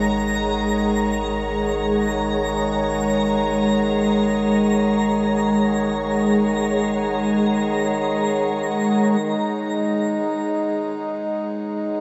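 Bathed in a huge, wet reverb, this spacious, reflective ambient fragment in G# minor drifts in free time, cut from a longer piece. Up front, a pure, mellow organ-like pad with ensemble chorus and a moving notch sustains slow-blooming chords beside a reedy, breathing pedal harmonium drone set in a boxy small room, while a deep, round sub bass fades out by 9.2 s and a twinkling, sparkling granular shimmer hovers high until 9.3 s. At 9.2 s the harmony shifts from D#m7/G# to G#m11, leaving pad and harmonium to close the passage.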